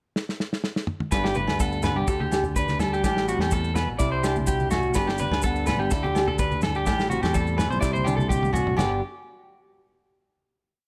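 A straight 4/4 pulse at 125 BPM drives this joyful, carefree highlife guitar band piece in G major, tuned to A4 = 437 Hz. A damped 70s drum kit, dry and up front with dark cymbals, a tight kick and a rolled-off top, opens with a pickup fill at 0.2 s before the full groove arrives at 1.1 s. There, a round, punchy fingered electric bass plays a syncopated figure, while a full-bodied nylon-string guitar adds fingerpicked syncopated accompaniment, complete with finger squeak. Up front, a twangy electric guitar at the edge of break-up picks an arpeggiated ostinato with slapback echo. Percussion fills out the background: ringing agogo bells keep a low bell time line, grainy maracas play a shaker pattern, and very quiet, low-tuned congas with a thick skin play a loose pattern under soft hands. Under light reverb, the chords cycle twice through G, Dsus4, Am7 and Cadd9, and a second drum fill leads to a closing G5 chord at 8.8 s.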